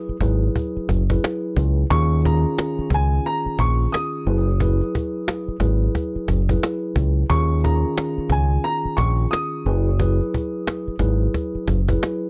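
A deep, round fingered electric bass sits up front in this dark, tough boom-bap hip-hop excerpt, its amped, direct tone moving between Gb1 and Eb2 from 0.1 seconds onward. Set at 89 BPM in 4/4 with a 61% swing on the sixteenths, the groove is driven by a snappy acoustic cajon with snares, played with hard hands and captured close and dry. A mellow tine electric piano supplies the accompaniment through built-in speakers, its clean tone given a cassette-tape tint and filtered at both ends of the spectrum. From 1.9 to 9.6 seconds a woody, vintage upright piano carries the melody high in its range, intimate and smooth with long sustain and audible action noise, likewise filtered. The harmony rocks between Gb9sus4 and Eb9sus4, tuned slightly flat to A4 = 439 Hz, and the whole fragment has a gritty hardware character with transformer saturation and little reverb.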